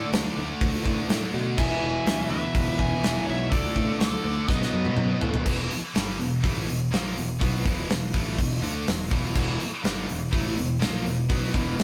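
A pair of nasal, overdriven lead guitars with a parked wah opens this anthemic, swaggering hard rock passage, one carrying the melody over a second line until 5.2 seconds. Beneath them, a crunchy guitar with spring reverb, a double-tracked heavy high-gain guitar and a scooped high-gain guitar churn out the riff in the background, alongside a growly, direct picked bass. A gated 80s kit sits up front with bright cymbals and a tight kick, rolling through a fill at 4.5 seconds into the next section, where the crunchy guitar drops out and returns at 9.4 seconds, all in a rough rehearsal-room sound.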